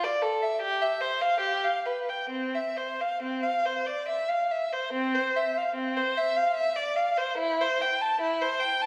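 Heard from further back in a reverberant recital hall, this short cut from a longer baroque-style suite movement for unaccompanied violin is radiant and dance-like, moving in a flexible, rubato 3/4 at 62-78 BPM in C major as a single bowed violin with a rich tone, vibrato and expressive portamento shifts into a new section at 4.9 seconds.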